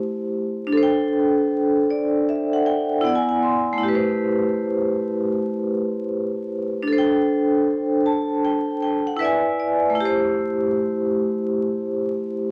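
Hip hop with a melancholic, hazy mood, built on a swung sixteenth-note feel in 4/4, taken from a longer piece. A vibraphone struck with hard mallets carries the whole passage alone from 0.0 to 12.5 seconds, its metallic, ringing tone sitting bright and up front with a slow motor vibrato. It plays fills at 1.5 and again at 7.7 seconds over a minor-key cycle of seventh chords that moves from Am7 through D7sus4 and E7 before settling back on Am7. The sound is steeped in worn, warbling cassette tape character, with vinyl crackle and a drifting pitch that blurs the edges. A small, moderate room reverb gives the vibraphone a short, close-up ambience.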